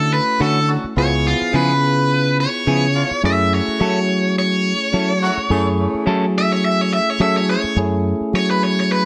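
Brooding and soulful, this swung minor-key blues fragment puts a bright, overdriven, picked electric guitar solo up front across its full 9.1 seconds, over a barky tine electric piano heard through a combo amp and a round, dark fingered electric bass. A clean electric guitar adds fingered stabs from 0.4 seconds, while a tight pop-style horn section with light vibrato and octave doubling holds smooth sustained chords in the background from 0.7 seconds. Light reverb gives the recording a digital ambience, and a faint mains hum sits underneath.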